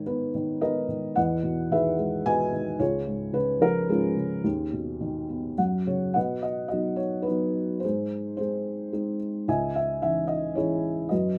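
Lightly reverberant and close, this short cut from a longer classical piece features a felt-muted upright piano playing alone, its dark, boxy, thick-felt tone sounding soft and intimate up front as it moves through relaxed, lyrical rubato phrases in triple metre over chords with added ninths and a major seventh, with a brief felt fill at 5.3 s leading into a new section at 6.2 s.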